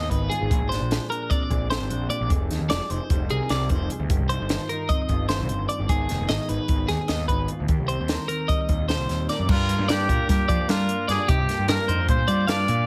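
A fuzzy, overdriven picked bass sits up front in this playful, wistful math rock and midwest emo piece in 9/8, alongside bright, compressed twelve-string electric guitar arpeggios with slapback echo, a dark, fingered, clean electric guitar, and a dry compact cocktail drum kit with a high-tuned snare and punchy kick, before a clear, vintage-toned trumpet with light vibrato and slapback echo takes the melody at 9.5 s, all within a light reverb.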